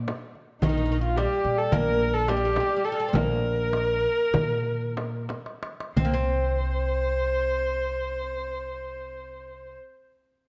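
Longing and melancholic, this excerpt from a Turkish makam ensemble piece moves in 9/8 at 174-218 BPM in eighths, slowing from 1.2 to 6.0 seconds before a drum fill leads into a new section at 6.0 seconds. A dark, woody kamancheh carries the melody up front with vibrato and portamento, supported by a bright, plectrum-plucked fretless oud playing a second line on its doubled strings, while a growly, thumpy pizzicato upright bass anchors the low end. Soft-handed darbuka and frame drum sit in the background until 6.3 seconds, all set in a moderate scoring-stage reverb captured by close, detailed microphones.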